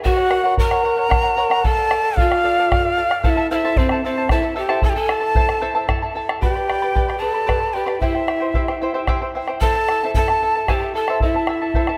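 An up-front cane quena carries the melody with a breathy, tongued tone, audible chiff and an unsteady vibrato in this festive, earthy Andean folk passage, cut from a longer piece and set at 75 BPM in 6/8. Beneath it a bamboo pan flute plays a softer second line with gentle attacks, a fingerpicked charango adds shimmering double-string accompaniment, and a deep, dark bombo sits close and dry from 0.1 s. Light reverb surrounds the detailed sound as the harmony moves through F#, Dm and Am, then G, C and Am after 6.4 s.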